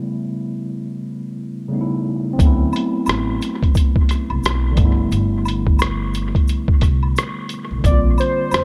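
Soaked in spring reverb and echo, this cosy, nostalgic lo-fi hip hop fragment, cut from a longer piece, has a hazy, tape-worn glow. A clean tine electric piano, filtered and run through cassette tape as if heard from its built-in speakers, opens alone, sitting up front with rich extended chords. At 2.4 seconds the groove arrives in a swung 4/4: a compressed, pitched-down sampler-style drum kit with a muffled, thumpy kick, hi-hat and rim click, joined by a woody, dark pizzicato upright bass on steel strings. An egg shaker and woodblock add close, dry acoustic texture with a group handclap, set low beneath the beat. At 7.9 seconds a warm, velvety synth lead enters up front, its smooth, full-bodied sawtooth and triangle blend sustained with vibrato, chorus and a low-pass filter.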